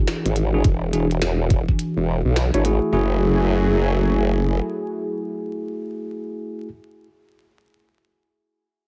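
A knocking, overdriven electronic kick sits up front from 0.6 to 1.8 seconds in this swaggering, playful glitch hop excerpt at 105 BPM in F# minor, with a sawtooth formant-sweep wobble bass, a bright tine electric piano jabbing stabs through dub echo and a low-pass filter, a smooth detuned analog pad holding chorused chords under a filter sweep, and a glitchy kit of tiny snare and clicky hats, all over vinyl crackle and light reverb as the chords move from E9 to F#m9 at 2.9 seconds.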